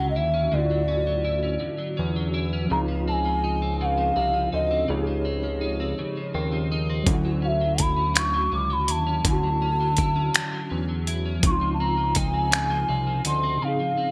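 Slow, sensual six-eight R&B at 55 BPM, this cut from a longer piece sits on a gentle sway between Dmaj9 and C#maj9, with a distant, hollow bansuri singing the vibrato-laced melody through digital delay while a dark, picked electric guitar with analog chorus weaves a second line and a worn, slightly out-of-tune tine electric piano adds lightly overdriven accompaniment through a combo amp. Underneath, a fat, detuned analog bass with a filter sweep and moving notch holds the low end up front. At 7.1 seconds a gritty, compressed sampler-style drum kit arrives with finger snaps, hi-hat and a thumpy kick under gated reverb, all within a bright 1980s-style digital production with light ambience.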